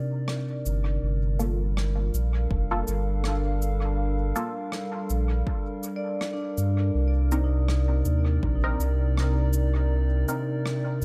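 A swung 81 BPM 4/4 groove of rim click and cabasa with dub echo, joined by a deep, overdriven electronic kick from 2.5 to 8.6 seconds, drives this hazy, spacious ambient dub piece in C dorian, where a round sine sub bass sits up front beneath a warbling, nostalgic, lo-fi tape-like pad with chorus and reverb, muted, phaser-tinged dub chord stabs with dub echo, and dark, ringing vibraphone arpeggios with tape echo that return at 6.0 seconds, over a Cm7, Gm9, Cm7 progression in an echo-heavy mix.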